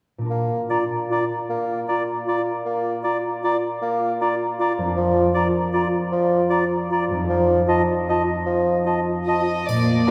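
Heard from further back in a wet cathedral space, this elegant, sweeping orchestral ballroom waltz in 3/4 moves with uneven, rubato beats. A ringing concert harp plays arpeggios from 0.2 s over a warm, present bassoon accompaniment, while a hollow silver flute, a clarinet and a close oboe with light vibrato share a second line. At 9.3 s a floating, sul tasto violin section takes the melody, and a pure cello section on the bass and a bright triangle join at 9.7 s, with a second violin section line arriving at the very end of the excerpt.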